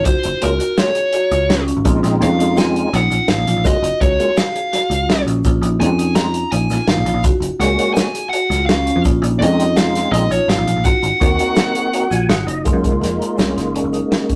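A dark, smooth overdriven lead guitar carries the melody up front in this intricate, driving progressive instrumental in 5/4, over marimba arpeggios, a round, foam-muted picked bass and a gritty, saturated soul drum kit with a tight kick. A fat, lightly overdriven tonewheel organ with key click, chorus vibrato and a slow rotary speaker fills out the harmony, while a grainy tube shaker sits in the background. The guitar drops out at 12.3 seconds, and the organ takes a solo from 12.7 seconds in a rough rehearsal-room recording with a small, moderate room sound.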